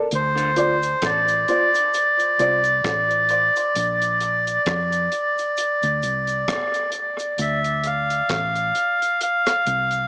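Dub reggae in D minor at a slow 66 BPM, with a swung sixteenth-note feel and a deep, hypnotic mood, heard as a short cut from a longer piece. A reedy, breathy melodica carries the melody up front, its nasal tone soaked in dub echo and cassette tape grit. A dark, woody upright piano adds short stabs with audible action noise and slight detuning, high-pass filtered and echoed, sounding only until 4.4 seconds. Underneath, a foam-muted fingered electric bass gives round, punchy low notes, while a dry acoustic reggae kit of hi-hat, tight kick and rim click is joined by a very quiet cabasa. The chords move from Dm7 to Bb at 3.8 seconds, where a break begins, and return to Dm7 at 7.4 seconds, with a filter sweep running until that point. A wet spring reverb and a lo-fi home cassette sound, like a small speaker, give the whole a lo-fi character.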